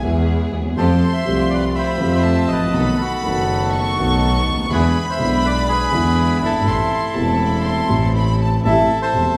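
A short, sultry and passionate tango cut from a longer piece opens with a dark, mellow concert grand piano laying down the accompaniment, its deep bass and audible action noise giving it a vintage, intimate character. With it come a bowed double bass, close and earthy with a biting, nasal edge, and a chamber violin section playing a soft-attacked, sul tasto second line high above. A bright symphonic string section adds intense, lush stabs from the background until 8.6 seconds. At 0.8 seconds a reedy, up-front bandoneon takes the melody. The feel is rubato in 4/4 as the harmony moves through dominant seventh chords and settles on A minor, with the whole band caught live in one room inside a large, wet studio reverb.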